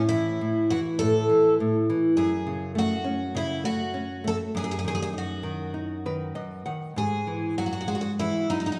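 A shimmering, octave-doubled twelve-string guitar carries the picked melody of this passionate, longing fado-style ballad fragment in rubato time, over a small, fingerpicked nylon-string guitar whose accompaniment shows audible finger squeak and adds a fill at 5.7 seconds, both guitars sitting up front in a moderate scoring-stage reverb.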